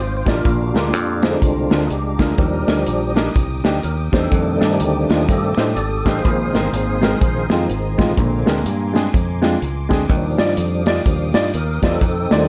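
Uptempo gospel at 124 BPM in Eb major, this short excerpt from a longer piece swings its eighth notes with a hopeful, soulful lift. A fat, lightly overdriven tonewheel organ takes the lead as soloist throughout, its sustained chords colored by chorus vibrato, key click and a slow rotary speaker. Beneath it, a worn, woody upright piano, slightly detuned, supplies accompaniment from 0.3 seconds, while a bright, growly fingered electric bass sits punchy and up front. A modern studio drum kit with a punchy kick, medium-tuned snare and hi-hat drives the groove from the front of the mix. Far behind, a muted string section played con sordino adds veiled, lush sustained chords with soft attack and vibrato. The harmony moves through Bb7, Ebmaj7, F13 and Bb9sus4 before settling on Ebmaj9 at 10.1 seconds, all within a light reverb.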